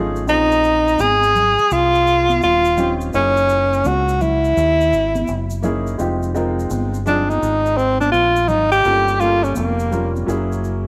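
A cool, mellow jazz-hop excerpt at 84 BPM with a swung 16th-note feel, where a breathy, up-front tenor saxophone with vibrato and scooped notes takes a solo from 6.0 seconds over a woody, vintage upright piano, a round, deep dub fingered electric bass, and bright egg shaker and congas sitting in the background, all in light studio reverb, moving through chords from Bbm11 to Gb9.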